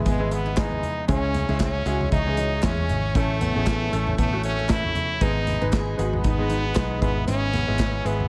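Anthemic and hopeful, this short excerpt of piano-driven pop moves at 116 BPM in 4/4 with a light 16th-note swing. A bright grand piano carries the accompaniment with a brilliant, polished tone and short sustain, while a round, punchy, foam-muted vintage electric bass anchors the low end. Up front, a stopped French horn sings the melody with a nasal, metallic edge and light vibrato, and a full-bodied jumbo acoustic guitar picks a riff in the background, finger squeak and all. The piano, horn and guitar each carry analog delay, a very quiet, woody string section holds lush bowed chords underneath, and a modern drum kit with a tight kick and medium-tuned snare keeps time alongside a barely audible group handclap. The chords move from E/G# through C#m, A and G#m before returning to E/G# at 7.0 seconds, all within a small-room ambience and an echo-heavy mix.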